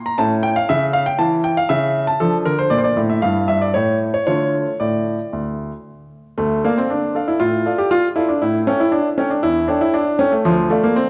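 A classical-period piano sonatina in D minor, this short excerpt moves at 118 BPM in a straight 4/4 with a restless, serious mood. A clear baby grand piano plays solo throughout, ranging from D2 up to Bb5, its tone polished and present, sitting up front in the mix. The harmony opens on A before settling into D minor, passes through Em7/G and a brief chordless moment at 3.7 seconds, then returns to D minor. A second section begins at 6.4 seconds, turning to A7 and resolving back to D minor near the close at 10.5 seconds. The sound is set in a wet recital hall with a long reverb tail, and the whole recording carries the worn, warbling pitch drift of old cassette tape.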